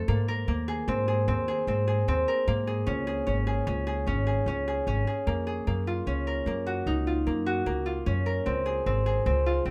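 Lightly reverberant, this restless, shimmering fragment of contemporary chamber music in 7/4 at 150 BPM in Db major sets a bright, ringing fingerpicked concert harp, arpeggiating over Abadd9 and Db5 chords, against a woody, thumpy pizzicato upright bass on gut strings, both up front, before the harmony moves to Gbmaj7 and then Dbmaj7 from 5.7 seconds until the cut at 9.7 seconds.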